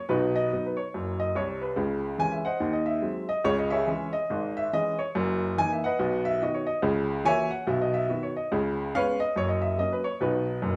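Exuberant and playful, this short excerpt of stride piano jazz moves at a brisk 142 BPM in 4/4 with a swung eighth-note feel, set in B major. A single upright piano carries the whole piece alone from 0.0 to 10.8 seconds, its tone clear and woody and placed up front, ranging from a deep F#1 in the bass to G#5 at the top. The harmony travels from B through C#m, G#7/D# and F#6 before circling back toward B, with an F#7/C# and a bare C#5 adding color on the way to the final B. A moderate reverb from a large studio, with a decay of 0.9 seconds, gives the piano a sense of space, and the sound has the immediacy of musicians playing live in one room. The passage is cut from a longer performance, so it offers a brief, buoyant glimpse of the full tune.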